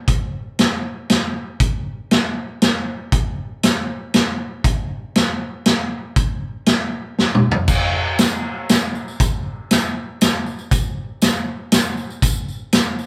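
Rock excerpt in a straight 3/4 with a jangly, hopeful mood, led by an up-front, gritty vintage drum kit with dark cymbals, a punchy kick and a medium-tuned snare; the kit plays a fill at 7.2 seconds before a jingly tambourine joins in the background at 7.7 seconds, all captured as a band playing live in one room with moderate studio reverb.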